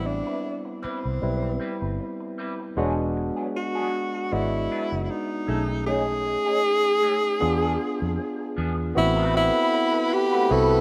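A breathy tenor saxophone carries the melody up front with vibrato and scooped notes, over a barky, lightly overdriven tine electric piano, a dark, round, foam-muted electric bass, and a twangy electric guitar riff run through wah and a small old amp. The result is smooth, cinematic soul with a gentle swing, cut from a longer piece. At 9.0 seconds, a distant string section with portamento and a mellow, very quiet detuned analog pad join in, all washed in a lush hall reverb within a rough home-demo mix.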